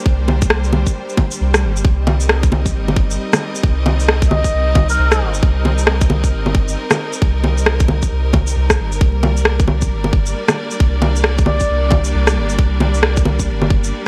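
Swung 16ths at 134 BPM in 4/4 drive this ghostly, melancholic future garage piece in C minor, with a tight, up-front electronic kick and layered electronic bongos, shaker and rim click in a small room, the kick dropping out briefly at 1.4 s. A soft, round dub sub bass with tube saturation and a lush, bowed symphonic string section holding sustained chords both pump against the kick, moving from Gm to Cm7 and back to Gm, while a flickering, grainy texture glints very quietly over the opening. A veiled, distant cup-muted trumpet adds short classical-style phrases through dub echo from 4.3 s, all under a dry, vinyl-crackled surface in this fragment of a longer piece.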